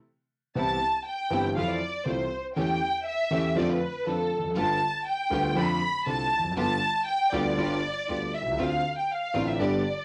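A rubato tango in 4/4 around 120 BPM, this tense, passionate fragment from a longer piece sits in C major and opens with a brief band accent before the violin section takes the solo from 0.6 s to 10.0 s. The violin section carries a lush second line high in its range, with vibrato, portamento and a soft bowed attack that feels expressive and up front. The concert grand piano supplies accompaniment reaching down to deep bass, intimate and smooth with audible action noise and a vintage character. Behind them, a bright, earthy chamber string section adds bowed stabs from the background. The harmony moves from Cmaj7 through Fmaj7, A7/E, Dm7/F and G7 before settling toward F6, G7 and Dm7. All three parts carry a cassette tape colour, and the home cassette recording sits in a wet, short studio reverb.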